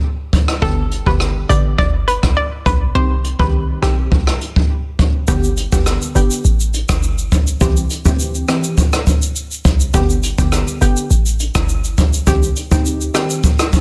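Dense, heavily limited and marred by lossy artefacts in a small room, this bouncy, summery dancehall excerpt at 103 BPM in G major sets a roomy jazz brush kit with a boomy kick, hi-hat, rim click, shaker and softly clipped snare over a tight, punchy 808-style bass, warbling, detuned vintage chord stabs with chorus, and a hollow, nasal square pluck melody with tape echo that sounds only from 0.6 to 3.9 s.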